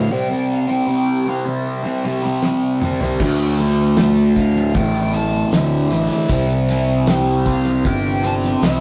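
A slow, straight 77 BPM pulse in 4/4 carries this dark, mysterious psychedelic rock fragment in D minor. It opens on a break over C, where a bright, double-tracked fuzz guitar riff sits up front with distortion and phaser, and an airy, reedy silver concert flute with vibrato hovers in the background. A dry 70s drum kit with a fat snare and tight kick enters with a fill at 2.4 seconds, and at 3.2 seconds a punchy, overdriven picked bass and a jingly tambourine join as the harmony moves from Dsus2 back to C, all in a rough rehearsal-room sound with warm saturation and moderate reverb.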